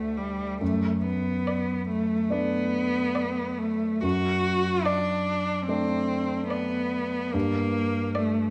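A clear, focused cello sits up front with vibrato, carrying the second line beneath a rich violin melody that sounds distant and in the background, sung with vibrato and expressive portamento. A dark, mellow baby grand piano supplies long-sustained accompaniment in this serene, tender excerpt from a slow romantic movement for piano trio, played with a rubato feel. The harmony rests on D before darkening to G minor at 7.3 seconds, all set in a moderate recital-hall reverb.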